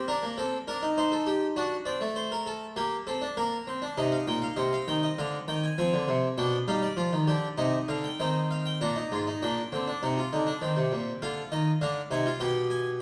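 A close-miked, up-front harpsichord with a brilliant, plucked Flemish-style tone and three sets of strings rings into a recital hall's reverb, cut from a longer piece. It plays a solemn, driving baroque-style three-part fugue alone, moving through dark minor harmonies before shifting at 8.8 seconds into a new section that closes on a G/B chord at 12.4 seconds.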